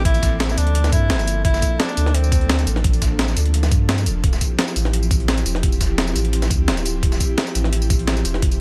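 The sound is close and fairly dry, with little reverb, and a compressed, tape-toned grit runs through the kick and the breakbeat kit, both of which carry the feel of being re-recorded in a small room. This is a rolling, melancholic liquid drum and bass cut from a longer piece, moving at 172 BPM in a straight 4/4 in G dorian, with the harmony shifting from Gm11 to Dm11 at 4.2 seconds. A clear tenor saxophone with vibrato opens in a classical-style solo, its line roughened by vintage 12-bit sampler crunch and trailed by digital delay before it drops out at 2.8 seconds. Beneath it, an airy, breathy pad holds mellow, full-bodied chords through chorus and sidechain pumping, while a deep, round sine sub bass sits up front. From 0.1 seconds a thumpy electronic kick leads the drums alongside a gritty breakbeat kit of hi-hat, snare and tambourine. An overdriven dusty soul kit, its hats and snare thinned by high-pass filtering, adds hi-hat and snare from the background.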